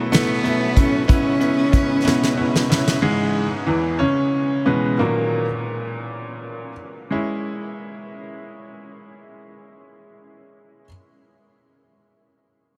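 A dreamy mix soaked in huge ambient reverb frames this short cut from a six-eight pop ballad in C# minor, moving at 53-62 BPM with a dramatic, aching mood. A bright, woody upright piano with audible action noise carries the accompaniment, joined briefly by a thick, lightly overdriven tonewheel organ on slow rotary speaker in the background. Alongside them come an intimate sul tasto cello melody with light vibrato, an airy bow and diffuse delay, and a soft brush kit with fat snare and punchy kick that plays a drum fill from 2.1 seconds. From 3.0 seconds the piano plays alone as the tempo slows, moving from C#m to D#m.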